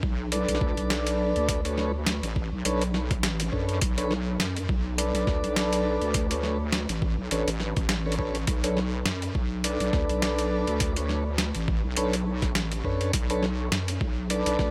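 A light reverb sits over a gritty, compressed mix, with the drums sounding as if re-recorded in a small room. This swaggering, funky glitch hop piece moves at 103 BPM in 4/4 with a 56% swing on the sixteenths, holding on a Bm9 chord in B minor, tuned to A4 = 438 Hz. From the very start, an overdriven electronic kick thumps beneath a heavy, wobbling bass that sits up front between A1 and F#2, its detuned square and sine tones thickened by chorus and tube saturation. At 0.3 seconds a boom bap sampler-style kit joins with hi-hat and a medium-tuned snare, overdriven and placed up front. A mellow, round tonewheel organ enters at the same moment, playing dark, clean stabs from D4 to D5 with key click, vibrato and a slow rotary speaker, pumped by sidechain and trailed by analog delay. This short section is cut from a longer piece and runs to 14.7 seconds.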